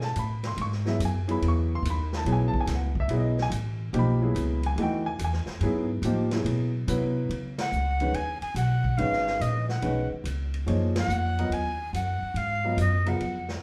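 A breathy, bright jazz flute with a crisp, chiffy attack enters at 7.6 seconds to carry the melody in this open, spiritual modal jazz excerpt, swinging over a harmony that moves from E major into a Db mixolydian colour. From the start, a present baby grand piano comps beneath it while a woody, thumpy pizzicato upright bass on gut strings anchors the low end, and a vintage drum kit with a punchy kick and rolled-off top keeps time quietly on hi-hat, ride and snare. The band hits accents at 7.5 and 10.9 seconds, and the whole group sits in a wet club reverb, heard from further back in the room.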